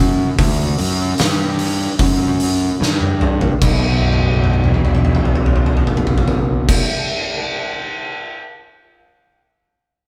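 Stoner and doom metal at a slow 74 BPM in B minor, this short cut from a longer piece feels hypnotic and sludgy, with a fuzz-drenched, overdriven picked electric bass sitting up front in its low register alongside an oversized, low-tuned acoustic drum kit with a fat snare, punchy kick, crash, hi-hat and toms. The kit sounds gritty and saturated in a bright stone room that pumps around it, and the whole band plays live together in one space with light reverb. Drum fills roll in at 2.8 seconds and again from 4.0 seconds into the second section, and the bass drops out at 6.8 seconds while the drums carry on to the end at 8.4 seconds.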